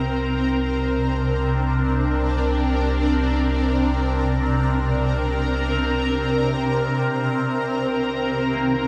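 Soaked in plate reverb with a cassette-tape haze, this reflective, serene ambient piece drifts in free time as an up-front, shimmering pad with octave-up shimmer, chorus and phaser sustains a Bbadd9/C chord over a deep, round sine sub bass before moving to Cm7 at 6.9 seconds, and a very quiet, ringing fingerpicked concert harp enters with arpeggios at 8.5 seconds just as this fragment of a longer piece ends.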